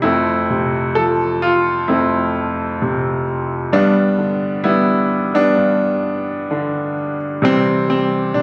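A bright, up-front concert grand piano with brilliant treble and deep bass plays alone in this calm, warm fragment of lyrical classical solo piano, moving freely in rubato through Fmaj7, G and C over about 8.4 seconds, its natural tone caught on a phone in the room and set in light reverb.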